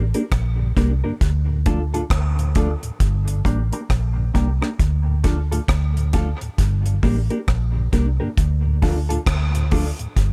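Dub reggae at 67 BPM in D minor, this hypnotic, spacious cut from a longer piece sways on a swung sixteenth-note feel as the chords alternate between Gm and Dm. A round, dark, foam-muted vintage electric bass and a dry acoustic drum kit with a tight kick, hi-hat and rim click sit up front. Behind them, a clean, compressed fingered electric guitar carries phaser and dub echo, while a soft, flute-like tonewheel organ turns through a slow rotary speaker in the background, all with little reverb.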